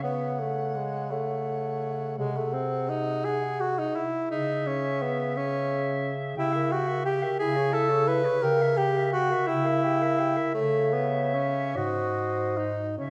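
Classical and lyrical, this yearning, solemn fragment for single-reed quartet unfolds in a rubato 6/8, with a clear soprano saxophone singing the melody with light vibrato from a distant, roomy position, a smooth-topped clarinet tracing a second line in the background, a warm tenor saxophone carrying the accompaniment up front, and a mellow, soft-attacked bass clarinet anchoring the bass close by, all set in a wet scoring-stage reverb as the harmony passes through diminished chords.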